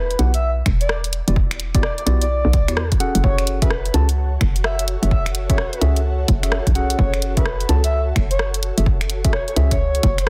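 A breathy, flute-like synth lead and a hollow, knocking FM bass open this late-night excerpt of two-step UK garage at 128 BPM. The bass sits up front with a bouncy, punchy attack and sidechain pumping, while the lead floats in a high register through analog chorus, vintage 12-bit sampler grit and dub echo. A tape-toned, layered garage kit of finger snaps, hi-hat and rim clicks swings on the sixteenths, its snare softly clipped. A punchy electronic kick arrives at 0.7 seconds, and mellow, clean tine electric piano stabs ring out through their own dub echo. The harmony moves from Em7 to F#m7 at 3.0 seconds, and an ethereal, airy pad of detuned unison voices drifts in at 3.8 seconds, pumping beneath its ensemble chorus and built-in reverb. The whole track carries a dense, heavily limited modern master in a digital ambience.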